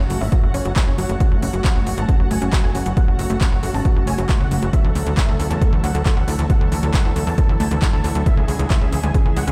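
Driving and euphoric, this short uplifting trance cut pairs huge, lush detuned supersaw chords, pumping under sidechain with low-pass filtering and delay, against very quiet unison pluck arpeggios, a tight, nasal sequencer bass sitting up front, crisp hats and handclaps from a big-room dance kit, and a punchy electronic kick entering at 0.3 seconds, all bathed in a large studio reverb as the harmony moves from F#m through Dadd9 to C#m.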